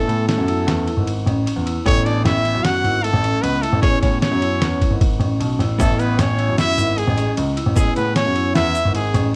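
A dry, close studio sound with small room ambience frames this driving, intricate progressive instrumental in 5/4, cut from a longer piece and resting on a single Amaj7 chord. Up front, a bright, present trumpet carries the melody over a breathy flugelhorn second line with light vibrato, while a dark grand piano with long sustain plays the bass and a gritty, pitched-down sampler-style drum kit supplies thumpy kick, snare and ride cymbal. Further back sit a clean, picked hollow-body electric guitar, ringing soft-mallet vibraphone arpeggios and a grainy tube shaker that joins at 5.8 seconds.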